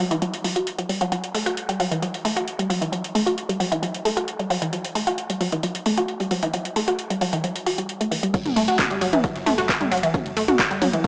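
A straight 4/4 pulse at 133 BPM drives this intense, hypnotic peak-time techno excerpt in F# phrygian, where a squelchy, resonant blip pluck riff sits up front with phaser, analog delay and sidechain pumping over a metallic techno kit of hats, claps, crash, ride and toms. At 8.3 seconds the drop arrives, bringing a punchy electronic kick and a very quiet gritty breakbeat kit of hi-hat and snare, with a deep, saturated sub bass following at 8.5 seconds, held low in the background. Drenched in wet spring reverb, the sound carries the small-speaker character of a home cassette recording.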